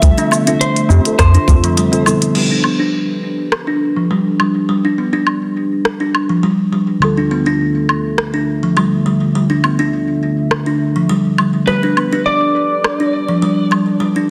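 This peaceful organic downtempo excerpt at 103 BPM in G mixolydian opens with a woody, airy kalimba playing arpeggios up front over muted, felt-like synth keys and a warbling, nostalgic tape-like pad, both pumping with sidechain and moving through filter sweeps from 2.4 seconds, while a round sub bass, a tight electronic kick and a ringing, close tabla sound only briefly at the start, an organic electronic drum kit with smooth hats, crash cymbal, cabasa, rim click and woodblock sits up front, and a clean slide lap steel guitar with digital delay carries the melody at the outset and again at 11.7 seconds, the whole set in a lush hall reverb with a dense, heavily limited modern master.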